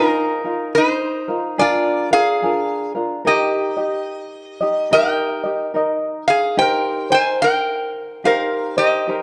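Close, detailed microphones and light reverb frame this sunny, relaxed Hawaiian excerpt in Eb major at 72 BPM with a swung 4/4 lilt, where an up-front metal-body resonator slide guitar, played with fingerpicks, carries the melody in a bright, nasal, metallic voice over a warm, light, thumb-plucked tenor ukulele accompaniment as the chords move from Bb7sus4 through Bb7 to Eb and Cm7.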